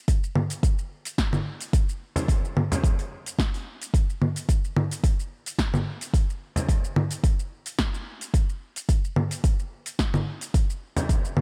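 A dark, dry production frames this meditative, earthy downtempo groove in 4/4 with a light sixteenth-note swing, cut from a longer piece. An up-front electronic kick drum, deep and tape-warm with a small-room character, runs beneath an overdriven, layered deep house kit of congas, metallic hi-hats, shaker and a punchy snare. A large, deep acoustic frame drum adds brief accents, first at 2.2 s and again near 6.6 s and 11.0 s.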